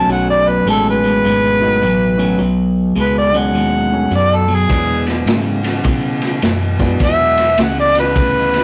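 A swung 104 BPM shuffle in 4/4 drives this rollicking, swaggering electric blues excerpt in B mixolydian, moving from B7 to E7 at 4.7 seconds, when a muffled, lo-fi drum kit with punchy kick, snare and ride cymbal joins up front. Out front, an overdriven harmonica carries the melody with scooped notes and light vibrato, over a slightly broken-up guitar riff through a small old amp and a dark, foam-muted fingered bass. An intimate grand piano with audible action noise sits in the background until 7.5 seconds, all captured as a rough rehearsal-room recording with light reverb and saturation.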